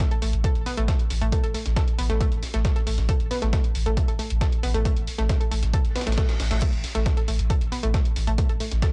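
A punchy electronic kick drum sits up front through this dark, driving peak-time techno excerpt at 136 BPM in straight 4/4, re-recorded in a small room for an analog thump. Beneath it, a deep, round sine sub bass holds A1 with overdrive, a low-pass filter and sidechain pumping, while an analog pluck riff between A3 and A4 mixes sawtooth and square tones with a sub octave, a filter sweep, chorus, cassette-tape grit, tape echo and its own sidechain pumping over an Asus2 harmony. A punchy analog drum machine adds crash cymbal and hi-hat, and in the background a dusty, tape-warm sampler-style kit contributes high-passed hi-hat and a medium-tuned snare. A reverse cymbal swells in the background from 5.9 to 6.6 seconds. The mix is dry and gritty, with little reverb and a hardware edge, cut from a longer piece.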